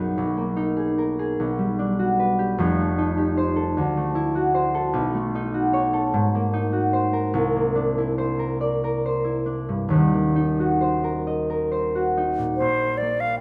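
A rubato lilt in 6/8 carries this dreamy, luminous impressionist duo, cut from a longer classical piece, as the concert harp alone spends the first 12.6 seconds on ringing, thumb-plucked chords that drift through lush ninth harmonies toward an Ebm6. At 12.6 seconds the harmony settles on Bbadd9 and the silver flute enters up front with a pure, softly attacked tone and vibrato, sounding a brief melody between C5 and F5. A moderate stage reverb gives both close-set instruments a glowing sense of space.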